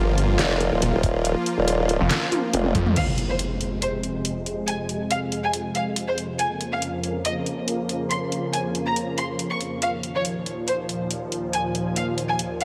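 A half-time 140 BPM groove with a light 16th-note swing drives this menacing, aggressive heavy wobble dubstep cut in F minor, which opens on a drop where a snarling, growling distorted saw bass and an up-front formant-sweep wobble bass with chorus roar over a knocking, tape-warm electronic kick and a layered dubstep kit of deep snare, crash, handclaps, hi-hat and toms, until a drum fill from 2.3 seconds leads to an electronic impact at 3.0 seconds, where a soft-attack, floating bowed violin section with dub echo carries the melody above a lush, detuned supersaw pad that pumps under sidechain and low-pass filtering through Fm, Bbm/F and Ebsus2, set in a moderate hall reverb.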